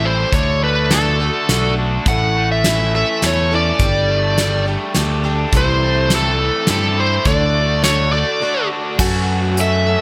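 A bright, 1980s-style digital production with light reverb frames this short, hopeful and nostalgic excerpt of folk rock and heartland rock in a straight-feeling 3/4. Up front, a bluesy lead guitar carries the melody with a distorted tone, delay, and a warm edge, while a crunchy, double-tracked overdriven guitar plays a riff beneath it. A boxy, picked acoustic guitar with a swing lilt and an ensemble chorus effect fills out the accompaniment, and a round, dark fingered electric bass sits forward in the mix. A soft brush kit with a fat snare, punchy kick, hi-hat and crash cymbal enters at 0.3 seconds, its gated reverb giving the brushes a studio-room weight. The chords move from D through A, Gsus2 and C6 back to D, and after a brief break at 8.4 seconds, an intimate, woody upright piano with audible action noise and long sustain slips in quietly in the background at 9.0 seconds as the harmony turns to F#madd9.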